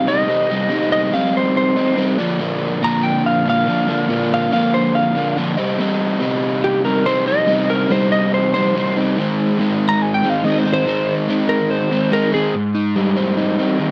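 A dry, close studio sound in 1970s style frames this restless, bittersweet rock excerpt, where a dark, slightly broken-up lead guitar with slapback echo plays a picked, compressed solo over a bright, double-tracked rhythm guitar whose crunchy overdriven riff sits up front, moving from C minor through Bb and Ab before the lead stops at 12.5 seconds and the riff carries on alone over an Abmaj7 until 13.9 seconds.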